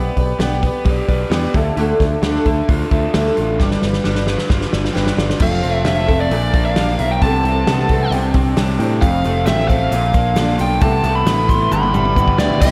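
A straight 4/4 pulse at 133 BPM drives this nostalgic, warm folk rock and heartland rock excerpt. A boxy picked steel-string acoustic guitar, a dark, double-tracked overdriven electric riff, a bright picked electric bass and a punchy, natural country drum kit with a medium-tuned snare carry chords from G/B through Dmadd9 to G7. A biting lead guitar with overdrive and analog delay takes the melody from 5.4 seconds over F, Bb and Amadd9/C, a grainy tube shaker joins very quietly at 9.0 seconds, and drum fills close both sections, all set in a dreamy mix soaked in lush hall reverb.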